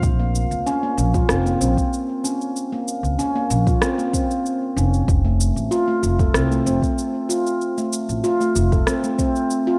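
A rough home demo mix with light reverb frames this hypnotic, warm organic downtempo excerpt in Bb harmonic minor at 95 BPM, moving from Bbm to F at 5.1 seconds. An up-front handpan enters at 0.2 seconds with bright, ringing, airy arpeggios struck with sharp finger strokes, roughened by vintage 12-bit sampler grit and trailed by digital delay. Beneath it, a woody, growly pizzicato upright bass pumps with sidechain compression alongside the deep, tape-tinged electronic kick, while a shaker and rim click, re-recorded in a large room, sit further back.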